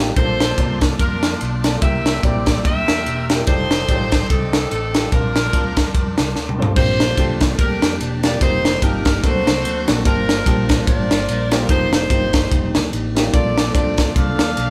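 Recorded live in one room with light reverb, this hopeful, reverent uptempo gospel excerpt in Bb major swings at 146 BPM, as an edgy, close-miked saxophone section carries the melody with vibrato over crisp, saturated fusion drums with bright cymbals and a punchy kick (a fill arriving at 6.4 seconds), a round, amped fingered electric bass, a woody, slightly detuned upright piano, and a soft, flute-like tonewheel organ whose fast rotary speaker and key click sit in the background beneath rich chords such as Bbmaj9, F13 and Gm9.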